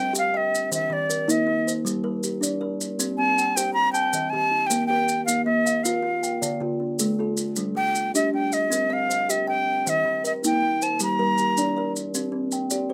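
A breathy, bright concert flute carries a tongued, slightly unsteady straight-tone melody over two ringing, woody kalimbas, one mellow and fingertip-plucked and the other dark and thumb-plucked, which cycle interlocking arpeggios in a hypnotic southern African traditional mbira-style groove at 105 BPM in 12/8 on a C equiheptatonic scale, with grainy, up-front maracas joining at 0.2 s, chords moving through Cm, Eb, Gm, Bb5 and Dm, and the flute dropping out at 11.9 s in this rough home-demo excerpt set in a wet small room.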